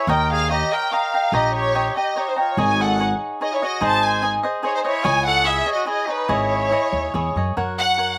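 A lush, bowed violin section carries the melody with expressive vibrato over crisp, picked cavaquinho, while a clear, distant trumpet sings a second line (the violins and trumpet both touched by slapback echo) and a woody pizzicato upright bass enters at 0.1 seconds, giving this proud, festive mariachi fragment in a free-flowing triple metre a dry, open-air sound.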